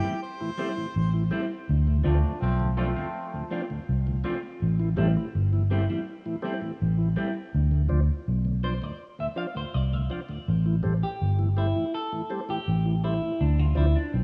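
Serious and hypnotic, this reggae excerpt moves at 82 BPM in a straight 4/4, circling between Am7 and Dm7. Alongside the guitar and organ at the start, a harmonica plays a brief, scooped, lightly vibratoed phrase in a jazz style, softened by tape echo, and it is gone by 1.3 seconds. The vintage muted electric bass enters at 1.0 seconds and sits up front, dark, round and punchy with a foam-muted thud, while a tonewheel organ supplies smooth, clean chords with key click and a slow rotary speaker. A brilliant trombone section adds a tight, punchy pop-style line with vibrato and tape echo between 2.0 and 3.5 seconds. The semi-hollow electric guitar plays clean, picked hollow-body accompaniment with tape echo throughout, and a clean electric guitar solo arrives at 7.5 seconds. Light reverb and cassette tape give the piece the rough feel of a home demo.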